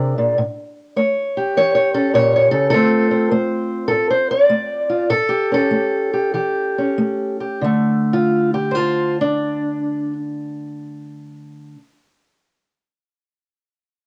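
Acoustic country blues with a mournful, brooding swing, carried by a lone fingerpicked parlour steel-string guitar that sounds dark, boxy and up front, moving from A7 through Dm7 and back to A7 before settling on D5, slowing down between 2.7 and 7.6 seconds, all in light studio reverb with the grain of a home cassette recording in this short cut from a longer piece.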